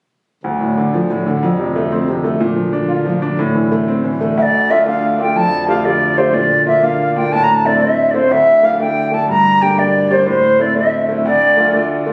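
Captured on a phone in the room, this compressed recording has a club-like reverb around it, and the short fragment of a longer piece moves with a spirited, driving Celtic folk lilt in 6/8. A brilliant, up-front grand piano carries the accompaniment while a reedy, breathing pedal harmonium holds a low, vintage-toned drone underneath. At 4.4 seconds, a wooden flute takes the melody with an airy, soft-attacked tone, vibrato and a touch of plate reverb, riding over the piano and harmonium until the close.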